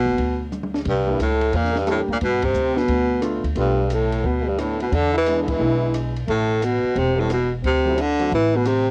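Small-group swing and bop jazz at 177 BPM in G major, playful and sophisticated, heard in a short cut from a longer piece with the feel of a home cassette recording in light reverb. A bright, present baritone saxophone with light vibrato carries the melody up front over a woody pizzicato upright bass, while a punchy, forceful trombone holds a second line in the background and a compact cocktail kit, dark with a high-tuned snare and rolled-off top, plays a fill at 0.5 seconds. A natural-sounding grand piano enters at 1.1 seconds with accompaniment as the chords move from C9 through E7 and Am to D9, with band accents at 2.4 and 5.4 seconds.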